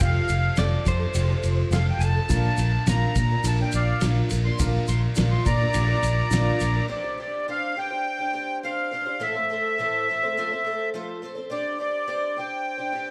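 A straight 4/4 groove at 104 BPM from a cloth-damped, thuddy drum kit, growly fingered electric bass and grainy tube shaker drives this hopeful, nostalgic folk rock and heartland rock passage in C major, where a sweet, reedy accordion solos up front over a shimmering, octave-doubled picked twelve-string acoustic guitar and a mellow upright piano in the background, while a twangy twelve-string electric guitar adds a brief second line with spring reverb and tape echo; once the drums, bass, shaker and piano stop around 6.8 s, the accordion and acoustic guitar carry on to 13.1 s, all heard as a live club gig through the venue's PA.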